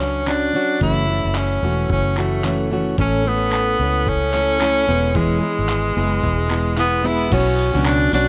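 Heartfelt and easy-going, this short acoustic pop passage, cut from a longer piece, moves at 111 BPM in 4/4 with a lilting swing on the sixteenths, in A major. A bright tenor saxophone carries the melody up front with pop-style vibrato, its line trailed by tape echo. Beneath it, a fingerpicked, plugged-in jumbo steel-string acoustic guitar supplies a full-bodied accompaniment, while a vintage foam-muted electric bass adds round, punchy low end with a dark, amped tone. A dusty, sampler-style soul drum kit sits further back, gritty and compressed with overdrive, its thumpy kick joined by handclaps, tambourine and crash cymbal. The harmony drifts from a rootless Bmadd9 through F#m7, A and E before returning to Bmadd9 at 7.3 seconds, all wrapped in a light reverb.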